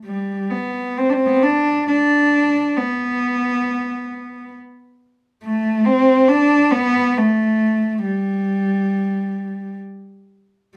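Haunting and mournful, this fragment of a slow Celtic folk piece in 6/8 at 45 BPM drifts with uneven, rubato beats as a lone bowed cello, intimate and up front, plays sul tasto between G3 and D4 from 0.1 to 9.8 seconds with a soft attack and light vibrato, set in a single live room with light reverb.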